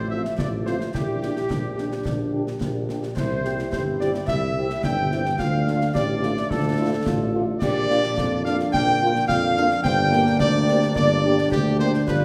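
Heard in a reverberant recital hall, this proud, rousing military-style march for wind band moves at 108 BPM in a straight 2/4, cut from a longer piece. A clear solo cornet carries the melody with light vibrato over an up-front tuba bass, while a euphonium, a woodwind section and a very quiet flute ensemble add second lines, trombones hold sustained chords in the background, and a distant French horn section accompanies. Close, dry concert snare, bass drum and dark clash cymbals join at 0.2 s, under harmony that moves from F/A through C, Dm and Bb to Gm.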